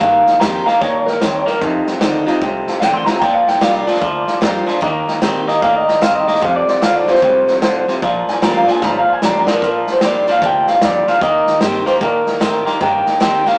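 A rough rehearsal-room recording with warm saturation, light reverb and a small-speaker sound opens on this rowdy, rollicking rockabilly excerpt in Bb major, swinging along at 150 BPM in 4/4. Up front, an electric guitar through a small old amp carries the melody with a bright, slightly broken-up twang, taking a clean solo from 0.0 to 9.6 seconds over chords that move through Eb, F7 and Bb. Beneath it, a second twangy electric guitar plays a scooped, clean riff in the low register, while a full-bodied dreadnought acoustic guitar picks out accompaniment in the background, finger squeaks audible. A jangly, detuned honky-tonk upright piano sits very quiet in the mix, and a woody, thumpy upright bass with gut strings is plucked pizzicato far back. The vintage drum kit brings a punchy kick, medium-tuned snare and hi-hat in a pumping small room with a rolled-off top, adding fills at 2.8 and 8.8 seconds before the music moves into a new section at 9.6 seconds.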